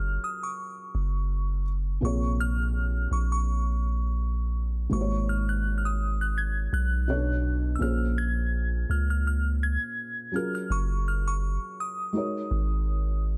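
A glassy, chorused FM synth bell sings a high, crystalline melody while a soft, felt-muted upright piano and a deep, sine-toned 808-style bass sitting up front sound together from the opening moment in this dry, late-night, sensual contemporary R&B passage at 83 BPM in Bb minor, with a lightly swung 16th feel and chords moving from Gbmaj7 through Bbm7 and Ab7sus4, touching Bm7 at 7.1 seconds and returning through Bbm7 and Gbmaj7 before ending on Ab9sus4.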